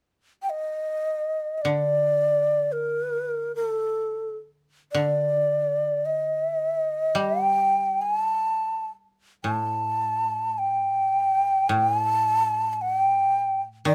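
Japanese traditional chamber music, austere and calm, flows in a rubato 2/4 with uneven beats, taken from a longer piece. A breathy, mellow end-blown bamboo shakuhachi carries the melody from 0.4 s, sitting up front with vibrato, a crisp attack and audible chiff. A koto plucked with fingerpicks enters at 1.6 s as a quieter, dry and woody low accompaniment, and both sit in a small room with moderate reverb.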